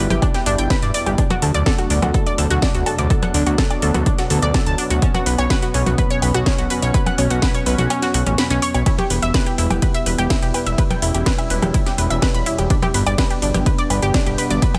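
A polished, lightly reverberant mix opens this cinematic, hypnotic slice of melodic techno, cut from a longer piece and built on a straight 4/4 pulse. Up front, a punchy, layered electronic kick drives the groove beside a fat, saturated analog bass of detuned sawtooth that throbs with sidechain pumping. A round, bright analog pluck spins arpeggios through chorus and digital delay, while a detuned sawtooth pad sits in the background, slowly swelling through sustained chords that move from G to D, Bsus2, Em and back to G. The techno kit adds metallic hats, a cracking snare, ride cymbal, woodblock and percussion blips, and beneath it all a very quiet, granular drone swarms with tense, unison sine tones. The kick drops out from 7.9 to 8.9 seconds, letting the pumping synths and drums hang briefly before it returns.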